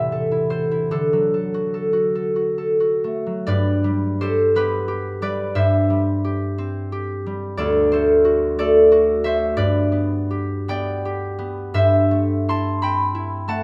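A ringing, fingerpicked concert harp sits up front in this peaceful, graceful classical solo excerpt in G major, moving freely in 6/8 at roughly 42-62 BPM in dotted quarters, spanning D2 to C6 as it settles onto a G chord at 3.5 seconds, all captured by close, detailed microphones in a moderate stone room reverb.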